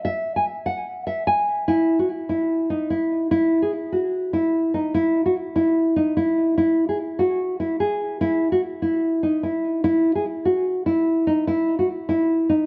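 A nylon-string guitar carries this short hip hop clip on its own, sitting up front with a dark, woody, full-bodied tone that hints at old strings and a deep classical character. It is thumb-plucked, ranging from D#4 to G#5 in E major, tuned slightly low to A4 = 439 Hz. The tempo is 147 BPM in 4/4 with a half-time feel, and the mood is both dreamy and triumphant. A low-pass filter softens the guitar's upper edge, while a digital delay adds echoing repeats, and a light studio reverb surrounds it. The passage is cut from a longer piece, shifting into new sections at 1.7 and 8.2 seconds before it ends at 12.7 seconds.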